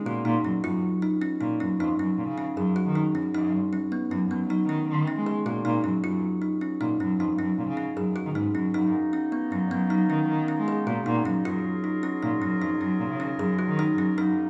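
Set in a straight 7/4 at 155 BPM, this short cut from a longer contemporary chamber piece in F# major has a shimmering, playful lilt. A woody, ringing kalimba plays arpeggios from the opening moment, its thumbnail plucks sounding vintage and slightly band-limited at the front of the mix. Beneath it, a single bowed cello carries the bass line, its gut-string tone nasal and reedy with light vibrato in a period style. At 8.7 seconds a woodwind section enters with distant, roomy sustained chords in a classical manner, sitting behind the kalimba and cello. The harmony moves between B and F# colours such as Bmaj9, Badd9/F# and F#maj9, and the ensemble sits in a wet recital hall reverb.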